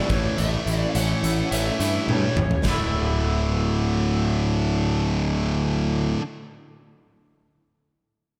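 A big arena sound with a lush hall reverb frames this restless, anthemic quiet-loud alternative rock fragment at 106 BPM, where a lo-fi lead guitar through a small cranked amp plays a brief overdriven solo with slapback echo and digital delay until 2.6 seconds, over a bright, up-front high-gain distorted riff, a chorus-soaked clean guitar playing arpeggios in the background, a punchy fuzz bass, and a big rock drum kit with a punchy kick that plays a fill before dropping out at 2.8 seconds as the chords move from A to Dsus2.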